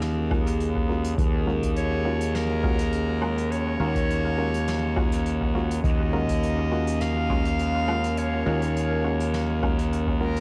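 Rhythm first: a straight 4/4 groove at 103 BPM, with an overdriven, deep electronic kick entering at 0.3 seconds beneath a jazz brush kit of hi-hat, high-tuned snare and woodblock that sits far back, soaked in dub echo and carrying a natural small-room feel. This ambient dub cut from a longer piece rests on a single Ebm11 chord in Eb minor, and its mood is deep and spacious. A growly, fuzz-driven fingered electric bass holds Eb2 up front, while a warbling, nostalgic tape-like pad with detuned, wave-folded tones, chorus and its own reverb sustains chords in the background. Muted, sawtooth-based chord stabs with a filter pluck and chorus decay into dub echo from 0.3 seconds. At 1.8 seconds a close-miked, classical-style clarinet takes the solo melody between Bb4 and F5, its tone ringing out through dub echo. The overall sound is dry, with vinyl crackle running throughout.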